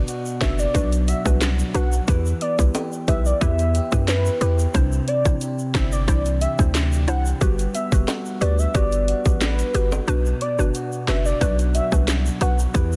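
A hollow, detuned square pluck with chorus and sidechain pumping opens this bouncy, hypnotic dancehall excerpt at 90 BPM in B phrygian, alongside slightly broken-up electric guitar arpeggios and a punchy, heavy 808-style bass, while an up-front island pop kit with tight kick, sharp snare, dark hats, rim clicks and handclaps joins with close tube shaker and ringing timbales. From 0.4 seconds a velvety, detuned sawtooth lead carries the melody with vibrato, portamento, chorus and tape echo over a Bm, Em, Cadd9, Gmaj7 progression. The kick drops out between 10.1 and 11.4 seconds, and the dry mix is dense and heavily limited.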